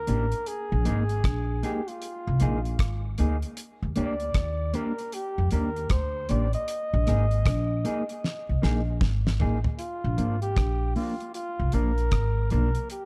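Roots reggae at a relaxed 77 BPM in 4/4, with a swung sixteenth feel and a serious, hypnotic mood, this excerpt from a longer piece moves from Bb7sus4 to Ebmaj7 and back before settling on Bb. A mellow flugelhorn carries the melody between F4 and Eb5, its punchy, scooped notes touched with light vibrato and trailed by tape echo. Underneath, a woody, pizzicato upright bass sits up front in the low register, while a dark, clean, fingered electric guitar supplies accompaniment through harmonic tremolo and tape echo. The damped 70s drum kit is dry and polished, with a fat snare, tight kick, rim clicks, hi-hat and toms, and a drum fill from 8.2 to 9.8 seconds leads into the closing section. Light reverb and a dark, warm production give the whole a shadowy, intimate glow.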